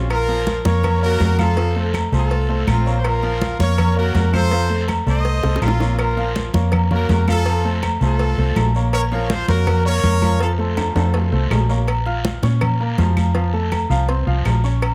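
Salsa at 163 BPM in Bb harmonic minor, passionate and danceable, this cut from a longer piece moves in a straight 4/4 over a Bbm and F vamp that touches F7 along the way. A brilliant, punchy horn section carries the melody with light vibrato and a loose, pop-style ensemble feel, playing until 11.7 seconds before dropping out. Beneath it, a clear, present grand piano supplies accompaniment across a broad span, while a dark, round, foam-muted electric bass sits up front as the most prominent part. The percussion is a busy bed: thick-skinned congas and tight, high-tuned bongos with cowbell sit close and dry in the background, ringing metal agogo bells and timbales carry a live-room sheen, woody claves tick softly, and a raspy, distant guiro adds texture. Drum fills arrive at 5.4 and 10.8 seconds, the second leading into a new section at 11.9 seconds, and the overall sound is close and detailed with little reverb.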